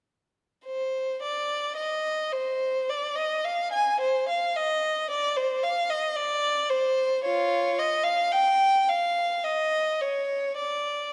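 Classical music in a baroque-style suite movement, this short fragment is written for a single unaccompanied violin and carries an introspective, grave mood. The triple metre is handled with a free, rubato feel, letting the phrases breathe at their own pace. The violin sounds from 0.7 to 11.1 seconds, moving between F4 and Ab5 with a rich, focused bowed tone, vibrato and a smooth top end. Placed up front, the one player is surrounded by a moderate scoring-stage reverb that lends the line a sense of space and gravity.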